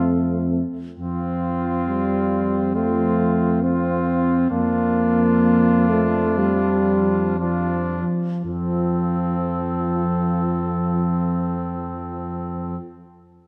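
A dark, smooth-topped French horn sits up front in this stately, triumphant classical brass quintet excerpt, alongside a punchy tuba on the bass, a warm trombone with vibrato in the background, a clear trumpet on the second line and a mellow, distant trumpet carrying the melody with light vibrato, all moving in a rubato 4/4 that slows through the first 8.4 seconds before a brief second section, bathed in a wet scoring-stage reverb.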